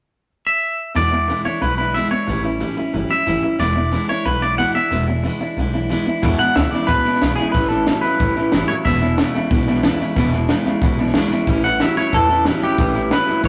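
A rough rehearsal-room sound with tube saturation and moderate studio reverb frames this rowdy, retro rockabilly excerpt in E mixolydian, driving at 183 BPM over E7 and A7. From 0.5 seconds, a clean, scooped, twangy electric guitar carries the melody up front, soaked in spring reverb. Just before 1 second a picked dreadnought acoustic with fresh, bright strings enters alongside, as does a slightly broken-up, lo-fi electric guitar through a small old amp that churns a low riff with warbly pitch drift, and at 1 second a woody pizzicato upright bass comes in to anchor the bottom. At 6.2 seconds a dry compact cocktail drum kit joins with hi-hat, a punchy kick and a high-tuned snare, and the lead guitar drops out briefly after 9.5 seconds before returning.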